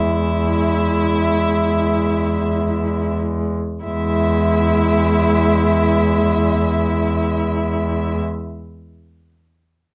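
Tender and warm, this slow romantic passage for string quartet, a fragment of a longer work in E major, floats in free time and eases its pace over the first 3.9 seconds, as a veiled con sordino first violin sings the high melody with vibrato and portamento, a distant muted second violin traces a lower line, a muted viola with vibrato fills in the accompaniment, and a muted cello with soft attack, light vibrato and portamento anchors the bass, each bowed by a single player within a dark production touched by light reverb.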